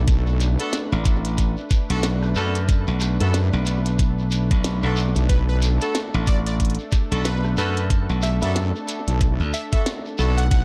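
Funky and gritty, this glitch hop excerpt at 92 BPM in B minor pentatonic rides a swung feel over a single Bm7 chord, with a saturated, heavy wobble bass and a knocking electronic kick up front, a glitchy drum kit of tiny snare, rim click and clicky hats set back in a large room alongside a grainy shekere, a warbling analog pad pumping under the sidechain, distant jazz-style horn stabs roughened by 12-bit sampler grit entering at 0.6 seconds, a bright, punchy slap bass joining at 0.9 seconds, and a detuned plucky unison lead with a filter sweep arriving at 5.3 seconds, all steeped in an echo-heavy digital ambience.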